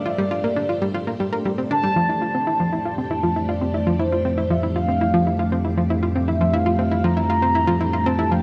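A straight 4/4 pulse from a bright, up-front analog pluck riff, entering at 0.1 s, drives this expansive, cosmic ambient space music, where a horn-like synth lead with vibrato and delay carries the melody over a lush, vintage string machine ensemble sustaining Gm7 and Fmaj7 chords and a dark, nasal, evolving analog drone bass, set in a wet plate reverb.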